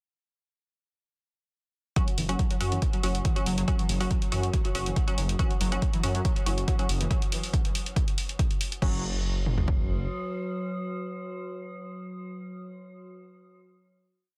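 A driving peak-time techno piece at 140 BPM in a straight 4/4 opens at 2.0 seconds with a punchy analog drum machine up front, its four-on-the-floor kick and mid and floor toms joined by programmed closed and half-open hats, crashes and a backbeat, all re-recorded in a small room. A thick, menacing detuned saw bass arrives almost at once with a beating, off-beat line between F#1 and F#2, pumping against the kick. Over it, crisp digital wavetable chord stabs play dotted-rhythm chords, one shape moved in parallel, while a gritty, screaming overdriven lead sits in the background, its 5-step loop drifting against the bar through distortion, phaser, chorus and delay as a filter sweep runs across it until 7.1 seconds. A metallic, inharmonic FM drone on F#3 fades in at 2.9 seconds, lending an eerie, chorused haze to the otherwise dry, dense and heavily limited mix. The hypnotic, relentless groove gives way at 8.8 seconds to a final chord, where the stabs and drone ring on until the close as the kick and bass fall away.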